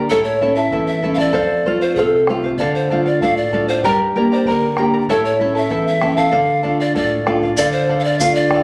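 A fingerpicked nylon-string guitar with a deep classical body and a shimmering, double-strung charango open this melancholic, earthy Andean folk excerpt in D minor at 96 BPM in 2/4, joined almost at once by an airy bamboo pan flute carrying the melody with a crisp chiff up front and a dark, dry bombo sitting in the background. The harmony moves through A, F, Dm, Gm and back to A and Dm, and a grainy, saturated tube shaker appears briefly at 7.6 s. The whole sits in a moderate recital-hall reverb, captured on a phone in the room with added club reverb, compression and a faint mains hum.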